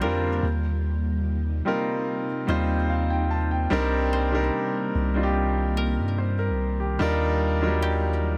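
Contemporary R&B excerpt with a moody, longing feel, where an intimate grand piano with audible action noise sits up front beside a deep, sine-toned 808-style bass, while an ethereal chorused pad with built-in reverb holds chords of Eb6, Cm7 and Ebmaj7 in the background and a woody, fingerpicked koto adds faint texture through a digital delay, all in a small, lightly reverberant room.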